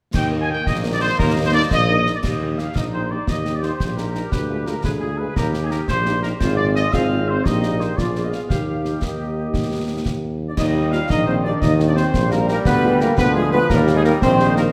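Heard in a wet recital hall, this proud, rousing military-style march for wind band moves at 115 BPM in 6/8 in Eb major: a dark, distant trumpet section carries the melody over a warm woodwind second line and a mellow French horn accompaniment, while clear trombone chords sound at the start and return from 10.6 s, an up-front tuba holds the bass, close acoustic snare, bass drum and bright clash cymbals drive the march, and a warm, punchy euphonium second line joins at 10.5 s.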